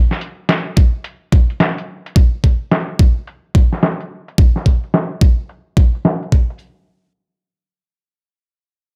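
A swung 16th-note groove at 108 BPM in 4/4 drives this playful, funky glitch hop excerpt, where a gritty, pitched-down, sampler-style kit of compressed, filtered hi-hat and medium-tuned snare sits up front from 0.1 seconds, an overdriven, layered electronic kick knocks in at 0.8 seconds with a small-room character, and a filter sweep moves over the drums until 6.6 seconds in a fairly dry mix.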